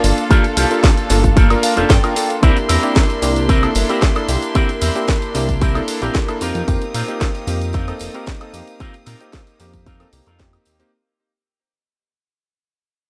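Nu-disco with a cosmic, groovy mood, this excerpt from a longer piece drops straight in with a house drum kit with a cracking snare, hi-hat, shaker and woodblock, a tambourine in the background, and a glossy, dark chorused synth bass, joined at 0.3 seconds by a punchy, up-front electronic kick, while a clangy electric grand piano and a sul tasto chamber violin section pump under sidechain; a twangy, envelope-filtered electric guitar riff carries lush chorus, 12-bit sampler grit and digital delay, a clean guitar fill arrives at 1.4 seconds, and the whole fades out from 2.4 seconds.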